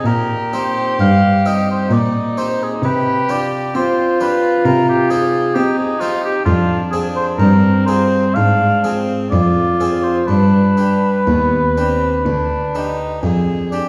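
Grave and introspective, this excerpt from a baroque-style sonata movement with continuo unfolds in C minor at a slow 60-67 BPM in 4/4, its pulse flexing with rubato. An oboe with light vibrato carries the melody up front, its tone warm and its style classical, ranging from F4 to F5. Beneath it, a single violin plays a second line with gut-string tone and period style, a rich, reedy sound touched by light vibrato. A plucked harpsichord in the French style, round and up front on one set of strings, supplies the accompaniment, while one bowed cello, likewise gut-strung and reedy, anchors the bass from D2 to C4. All four parts sound throughout the 13.9 seconds, with the harmony moving from C minor through F minor to G, and the ensemble is heard from further back in a recital hall whose wet reverb lingers around each phrase.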